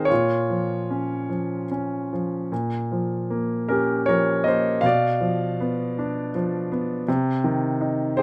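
Wistful and reflective, this short excerpt from a longer classical work features a lyrical solo piano moving in a flexible, rubato 3/4 at roughly 72-83 BPM. A clear grand piano carries everything on its own from 0.0 to 8.2 seconds, ranging from Bb2 up to G5. Its sound is intimate and natural, placed up front, with the noise of the action audible beneath the notes. The harmony passes from Bbm through Bdim at 4.8 seconds to Cm at 7.1 seconds, an opening phrase followed by its restatement. A moderate studio ambience with a short decay gives the instrument a sense of space while keeping its detail close and present.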